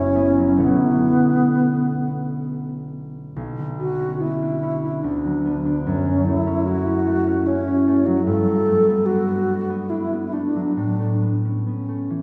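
A wet concert hall reverb with a 2.1-second decay surrounds this short cut from a longer piece, heard from further back in the room even as both players sit up front. It is an impressionist classical duo in B minor and 3/4, moving with a rubato feel at 64-75 BPM, and its mood is wistful and hazy. The alto flute carries the melody from B3 to A4 with a pure, hollow tone, vibrato, tongued notes and rolled-off highs. Beneath it, the concert harp plays thumb-plucked accompaniment from F#1 to F#4, its acoustic strings ringing and warm. Both parts play together from 0.0 to 12.2 seconds, and the harmony drifts from F#7sus4 and Bm11 into a new passage at 3.4 seconds that opens on Bmadd9 and passes through D6, F#m7 and Gmaj9 before arriving at Aadd9.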